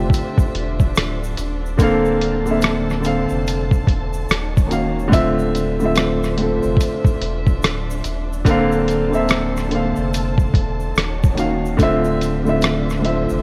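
Hazy and melancholic, this lo-fi hip hop excerpt rests on a dark, woody upright piano whose filtered chords, audible action noise and short sustain sit up front, moving between Dm9, Bbmaj9/D and Ebm9 with a lazy swing. Beneath it, a thick, saturated sub bass holds deep sustained notes, while a close studio string section adds bowed, vibrato-laden chords with gentle portamento through a low-pass filter. A muffled, pitched-down sampler kit with a thumpy kick, rim click and hi-hat drives the groove with overdriven grit, a grainy tube shaker lingers in the background, and light reverb wraps the whole 13.4 seconds.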